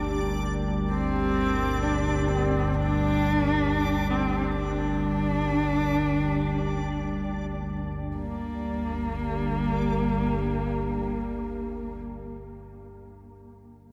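Dark ambient drone, vast and ominous, where a husky, up-front horsehead fiddle sings an expressive bowed melody with vibrato, portamento and delay over a deep, mellow detuned pad of sustained chords and a nasal, evolving analog drone with chorus, while a bright, reversed granular texture drifts above until 8.2 seconds, all sunk in a vast, echoing cathedral space.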